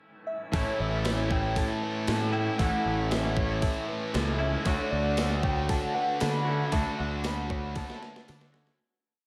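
A hazy, dreamy mix soaked in plate reverb opens this short shoegaze and dream pop piece in A major, moving at 116 BPM in a straight 4/4 as a round, gentle FM synth lead sings a motif-based melody through chorus and analog delay from 0.3 seconds, over chords shifting from A to Dmaj7. Beneath it, a clean direct-recorded guitar ripples an ostinato of arpeggios in lush chorus, a dark overdriven guitar strums in the background with whammy-bar dips, a bright double-tracked distorted guitar and a twangy guitar with reverse reverb ring out chords, and a fuzzed, punchy bass drives a dotted figure up front. A gated 80s drum machine with a thumpy kick and gated snare pushes a big rock groove, a jingly vintage tambourine joins at 5.2 seconds, and the whole piece fades out from 6.7 seconds under a closing drum fill.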